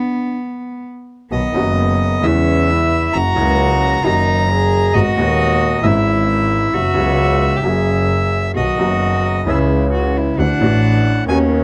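This tango fragment sounds dry and close, with little reverb, and the cello, bandoneon and double bass all sit up front. The mood is passionate and elegant, with a rubato feel in 4/4. A bowed cello opens alone, its soft-attack sul tasto tone pure and floating, then pauses from 0.4 to 1.3 seconds. At 1.3 seconds the bandoneon takes the melody with a bright, reedy, mid-forward voice, and the cello returns as a smooth second line beneath it. A warm, present baby grand piano supplies the accompaniment, and a bowed double bass with a nasal, gut-string, period-style tone anchors the low end a little louder than the other parts. The harmony moves from B minor into B major and through richer chords before ending on D add nine as the piece is cut off.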